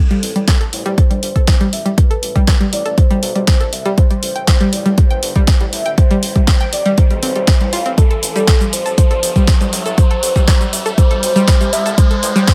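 A driving, dreamy stretch of progressive house, cut from a longer piece, builds for its full 12.5 seconds as a background riser climbs and a filter sweep moves across the smooth, velvety synth lead, which carries the melody with vibrato, chorus and digital delay over chords moving between Am9 and a rootless Fsus2. Round, full-bodied analog pluck arpeggios pump with the sidechain through chorus and dub echo, while a fat, nasal, detuned bass sits saturated and pumping in the background. An overdriven, deep electronic kick arrives at 0.5 seconds, up front in the mix, joining a deep house kit of cabasa, hi-hat and punchy snare re-recorded in a small room, all in a dry mix with little reverb.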